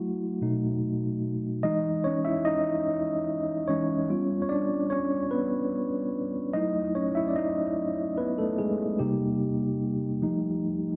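Sultry and late-night, this slow R&B excerpt in 6/8 moves at 49 BPM with a straight feel, carried entirely by a mellow, clean tine electric piano that sits up front and sounds as if heard through its built-in speakers. The piano plays alone for the full 11 seconds, ranging from B2 to E5 across lush chords such as Emaj7, G7#11, F#m9 and F9. A moderate echo-chamber reverb with digital ambience gives the dark, warm production an enveloping glow.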